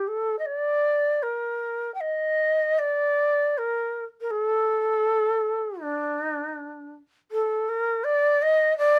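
A light reverb surrounds a lone, breathy bamboo shakuhachi in this brief excerpt of Japanese traditional chamber music, its end-blown tone carrying a soft attack and vibrato as it moves freely in rubato between D4 and G5. The mood is austere and calm, with the solo line shifting into a new section at 7.3 seconds before the fragment ends at 9.0 seconds.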